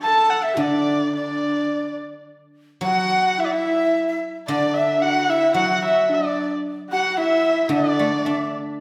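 Chinese traditional music for a chamber ensemble, this pastoral and graceful passage is cut from a longer piece, set at 110 BPM in 4/4 with a free, rubato feel in D gong mode. A dark erhu carries the melody up front, its soft attack, airy bow, vibrato and portamento giving an intimate, close sound from a single player. Beneath it, a husky horsehead fiddle adds a rich, focused second line with its own vibrato and portamento. A breathy bamboo dizi with a buzzing membrane traces another second line, tongued and a little unsteady. The guzheng, plucked with fingerpicks, supplies a ringing, silvery accompaniment, and it sounds on alone after the other three stop at 8.5 seconds, closing at 8.8 seconds. The music moves into a new section at 2.3 seconds, and the ensemble sits in a recital hall reverb that lends a spacious, churchlike glow.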